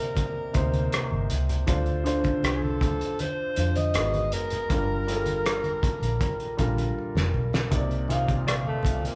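A breathy, distant alto saxophone carries a bittersweet, cinematic melody over worn baby grand piano chords and a muffled, cloth-damped drum kit with a fat snare in this lush 1970s-style soul fragment, joined by very quiet low-tuned congas at 0.2 seconds and a dark, round muted electric bass at 0.6 seconds, with a drum fill at 7.0 seconds before the opening Cm9 chord returns, the band sounding as if it is playing live together in one room with moderate large-studio reverb.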